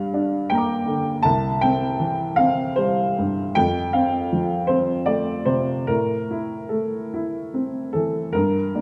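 A woody, slightly detuned upright piano opens alone and carries this brief, wistful fragment of neoclassical minimalist piano, moving through Gm7, C, F and Am in a rubato 3/4 at roughly 71-81 BPM. Its boxy, up-front tone spans C2 to D6 and sits in a moderate concert hall reverb, giving the sound an intimate feel. The piano plays from the start until 8.8 seconds, tuned to A4 = 441 Hz.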